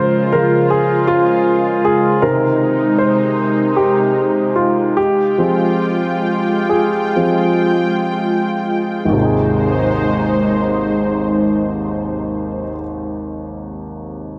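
Hopeful and emotional, this short pop fragment in Ab major moves at a slow 56 to 79 BPM in a straight 4/4, easing into a slowdown between 2.2 and 9.1 seconds. A polished grand piano with long sustain sits up front as the featured accompaniment, spanning from deep in the bass up to C5 and carrying the track until 14.4 seconds. Alongside it, also up front, a thick, evolving pad of detuned sawtooth voices in unison holds sustained chords with a slow attack, long release and chorus, ending at 12.7 seconds. The harmony travels from Db through Ab/C and Fmadd9 before settling on Ab at 9.1 seconds, where a new passage begins. A moderate hall reverb wraps the whole sound in a long, lush tail.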